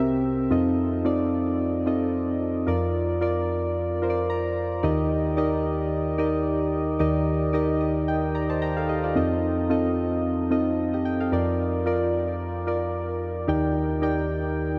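A lightly swung sixteenth-note pulse at 111 BPM in 4/4 carries this pop fragment, cut from a longer piece, with a mood that feels both nostalgic and urgent. A soft electric-piano-like synth plays alone throughout, spanning C2 to Bb5, its round, full-bodied, dark tone sitting up front with a fast attack that decays gently, colored by chorus, analog delay and a filter sweep. The harmony moves from C7 to F7, Bb/F and Ebmaj7, then cycles back through F7, Bb/F and Ebmaj7 again. The keys add short fills at 4.0 seconds and again around 7.5 seconds. Everything floats in a huge ambient reverb with a long 7.9-second tail, giving a dreamy mix with the top end rolled off.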